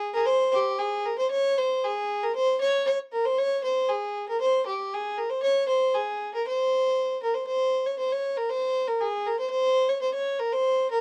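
A lone bowed fiddle opens this short medieval fragment, carrying the tune by itself from the first second to the end at 11.0 seconds. Its gut-string tone is nasal and reedy, with a smooth top that keeps the sound from turning harsh. The mood feels ancient yet driving, set in a straight duple metre with a steady forward pull. The melody stays within a modest middle register, and at 7.5 seconds the music moves into a new section that carries on to the close. The single player sits up front in a dry, close 1970s-style studio sound, touched only by light reverb.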